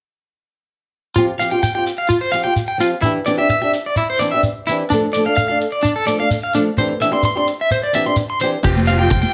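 A straight 4/4 pulse at 128 BPM drives this sunny, danceable highlife guitar band excerpt in F major, where from 1.2 seconds a dark, fingerpicked flamenco guitar plays accompaniment under an up-front, twangy electric guitar at the edge of break-up, whose arpeggios carry tremolo, slapback echo and plate reverb, while a grainy shekere keeps time. The chords move through Fsus2, Cadd9/E, Dm and Cadd9 before returning to Fsus2 at 8.6 seconds, where a round fingered electric bass, a gritty vintage drum kit with dark cymbals and a tight kick, and a very quiet, reedy combo organ with heavy vibrato join in. Hard-handed, high-tuned congas follow at 8.8 seconds, and the whole is set in a moderate small room.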